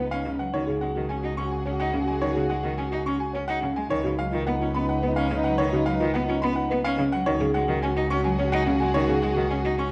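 In a straight 3/4 at 107 BPM, this propulsive, hypnotic excerpt of minimalist classical pattern music in Db mixolydian sets a brilliant concert grand piano melody over buzzing, woody marimba arpeggios played with soft mallets, a smooth bowed cello accompaniment, a bowed double bass holding Db2, a vintage-toned French horn second line and sustained, rich studio strings in the background, all cycling between Cbadd9/Db and Dbsus4 in a reverberant recital hall and colored by worn, warbling cassette tape pitch drift.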